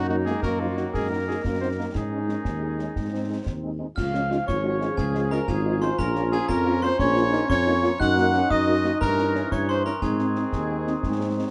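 Spirited and proud, this short cut from a longer military-style march for wind band moves in a straight 6/8 at 119 BPM, counted in dotted quarters, in D-flat major. A mellow cornet with light vibrato carries the classical-style melody, while a distant, roomy woodwind section and a soft-toned euphonium in the background supply second lines. Bright, close-miked trombones hold sustained chords and a smooth-topped French horn section adds tight accompaniment behind them, all anchored by a dark, up-front tuba on the bass. Concert snare, bass drum and clash cymbals with a dusky edge join at 0.3 seconds, and at 4.0 seconds, as the music moves into a new section, a bell-like glockenspiel struck with brass mallets rings out high above the band. The harmony turns through chords such as Absus4, Bbm and Gdim7 before settling on Ab, and a light reverb gives the sound a gentle sense of space.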